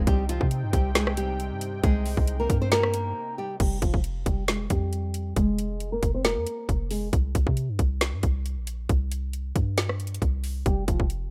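A half-time trap groove at 136 BPM in 4/4 drives this melancholic, menacing fragment in F minor, cut from a longer piece. The electronic drum kit sits up front with a hard-clipped kick, a woody snare, metallic hi-hats, rim clicks and crash cymbals, all carrying a tape-like tint. Beneath it, a deep, boomy 808-style bass with a sine core, a noise layer and a fast attack decays mellowly through the low register. A fingerpicked nylon-string guitar in a classical style carries the melody through a low-pass filter and digital delay, then drops out at 7.1 seconds and returns only briefly at 10.7. A smooth, warbling vintage pad of detuned sawtooth with a slow attack and chorus holds sustained chords over Cm through the opening section, ending as a short break leads into Fm at 3.6 seconds. The whole thing sits in a digital ambience with the rough feel of a home demo mix.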